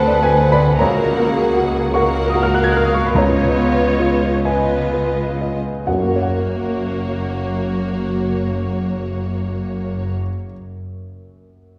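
Classical and passionate, this lyrical fragment of a longer piece moves at a rubato 40-54 BPM in F# major, slowing over its first 5.9 seconds as an up-front, intimate grand piano with audible action noise carries the melody alongside a lush, focused symphonic violin section, while a chamber violin section sings a second line, a clear, distant viola section accompanies, rich cellos and expressive double basses hold the bass, very quiet timpani with soft mallets enter at 3.1 seconds, and chords pass from D7 through C#9 to rest on F# in a reverberant concert hall heard from further back, the piano lingering alone from about 10.2 seconds until 11.8 seconds.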